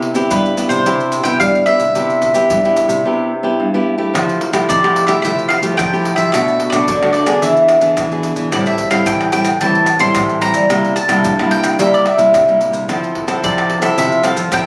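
Nylon-string guitars open this festive, playful samba-and-choro excerpt in C major at 110 BPM: one fingerpicked with fresh strings and up front, moving through chords from Cmaj7 to Fmaj9, Bm7, E7 and Am7, while the other, full-bodied and thumb-plucked, carries the bass beneath pandeiro, maracas, tamborim and a deep surdo heard in a small room. At 0.3 seconds a picked mandolin enters with the melody, its double strings round and forward as the most prominent part, and a break at 3.0 seconds leads into a new section at 4.1 seconds. The sound is that of a phone recording in the room, touched with light reverb.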